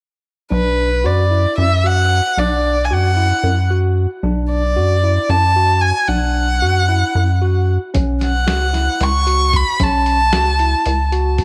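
Brooding and intricate, this progressive instrumental fragment in 7/8 pairs a dark, expressive bowed violin melody, full of vibrato and portamento and held up front, with a clean tine electric piano playing arpeggios and a rubbery, hollow square-wave bass with a resonant filter pluck. At 7.9 s a lo-fi sampler-style drum kit enters, pitched down and muffled with a thumpy kick and overdriven grit, as the harmony shifts from B minor to F#m over B. A moderate spring reverb lends the whole a shadowy sheen.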